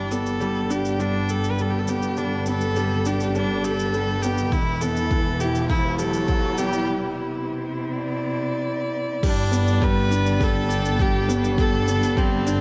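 Luminous and hopeful, this excerpt of piano and strings electronica moves at 102 BPM in G major, with a felt-muted upright piano playing a soft, intimate riff through digital delay while a clear, nasal viola carries the melody up front, its airy bow also treated with delay. Beneath them a dark string quartet holds woody sustained chords in the background, and a lush symphonic double bass section anchors the low end with sidechain pumping, joined by tape-tinged electronic shaker and crash cymbal. A background riser builds from 3.6 to 6.9 seconds, and a deep, layered electronic kick drum enters at 4.5 seconds, carrying the build-up and brief break into the drop at 9.2 seconds, all set in a small room with light reverb.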